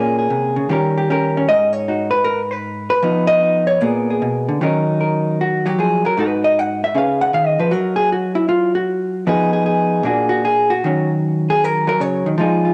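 Solo jazz with a swinging, smoky mood, this short fragment of a longer piece features a single vintage hollow-body electric guitar playing up front. The tone is dark, clean and picked, with a compressed, hollow-body character that comes through the grain of a home cassette recording. The feel swings its eighth notes while also stretching time with a rubato looseness. The harmony moves through jazz changes such as Bbm7, Eb7 and Db9/F, then settles into a solo passage from 4.6 s that passes through a chordless stretch before Fm7b5 and Bb7b13 turn back home to Ebm7 at 10.8 s. A light reverb and digital ambience give the room a faint halo around the guitar.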